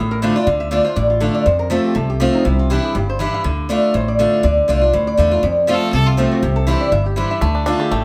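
A brisk, swung 4/4 at 242 BPM drives this lonesome, rustic bluegrass excerpt in D minor, cycling through Dm, F and Cadd9. A nasal, metallic lap resonator guitar played with slide and fingerpicks carries the melody over a boxy, up-front picked archtop guitar with audible finger squeak and a woody, thumpy pizzicato upright bass on gut strings. A bright bowed fiddle with light vibrato adds a brief second line at 5.7 seconds, and a twangy, percussive banjo enters with arpeggios at 7.4 seconds, set in a light reverb.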